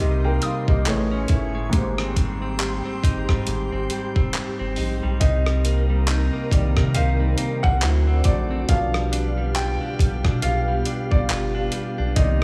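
A slow, longing contemporary R&B groove opens with a warm baby grand piano, a glassy FM pad, a clean direct-recorded electric guitar picking arpeggios through tape echo, and a round, deep analog bass that sits up front. At 0.4 seconds the dusty, sampler-style drum kit arrives with a thumpy kick, rim click, hi-hat and handclaps, gritty and compressed, alongside a brief woody, warbling synth pluck that sits in the background. The ethereal pad holds sustained chords beneath everything else, its ensemble chorus and built-in reverb moving with sidechain pumping. From 5.2 seconds the piano steps forward into a solo over the sensual, swung sixteenth-note feel, as the harmony moves from Cm7 toward D7 and G7/B. A small, intimate room ambience wraps the mix, and the passage is cut from a longer piece.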